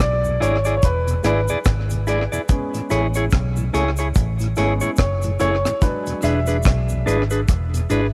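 Home cassette sound in a small, lightly reverberant room carries this sunny roots reggae excerpt, where a clear, woody upright piano takes the solo over a dry drum kit of tight kick, hi-hat and rim click with tape echo, a round, punchy foam-muted fingered bass up front, a clean picked electric guitar with tape echo, a mellow tonewheel organ with key click and slow rotary speaker sitting in the background, and a compressed, saturated cabasa, all moving through E7 and Amaj7 chords.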